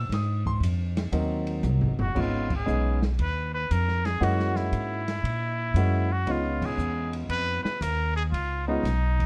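Small-group swing and bop jazz at 117 BPM, relaxed and easygoing in a swung 4/4 in Db mixolydian. A clear, polished grand piano accompanies up front alongside woody pizzicato upright bass and a softly mixed acoustic kit with dark cymbals and a boomy kick. During a drum fill, the nasal, breathy straight-muted trumpet takes the melody from 2.0 seconds with light vibrato, band accents land at 2.4 and 6.5 seconds, and light reverb gives this fragment a mellow glow.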